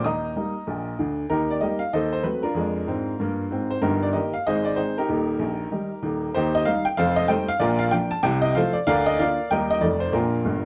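This is a swinging, playful stride piano jazz excerpt, cut from a longer piece and running at a brisk 190 BPM in 4/4 with a swing feel on the eighth notes. A solo upright piano carries the whole performance from 0.0 to 10.7 seconds. It covers a broad span from Eb1 up to Eb6, and its tone is clear, woody and natural, sitting up front in the mix. The harmony starts in Eb major, passing through chords such as Ebdim7, Bb7/F and Ab, then moves to Bb major from 6.3 seconds with colors like Eb69 and F9. A short piano fill arrives at 10.4 seconds, just before the clip ends on Bb. The production is dark and warm, with a moderate studio reverb that gives the instrument a modest sense of room.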